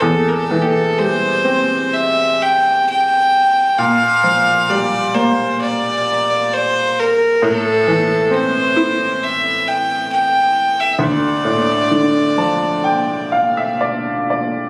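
Captured on a phone in a recital hall, this compressed fragment of a longer Celtic slow air carries a moderate reverb around two up-front parts. A single biting, nasal bowed fiddle sings a longing, mournful melody with a free, rubato feel, while a brilliant, worn and slightly detuned upright piano accompanies it through Am7, Gm7/Bb, Am and Dm. The fiddle falls silent at 13.8 seconds, and the woody piano plays a fill from 11.9 seconds to the close at 14.7 seconds.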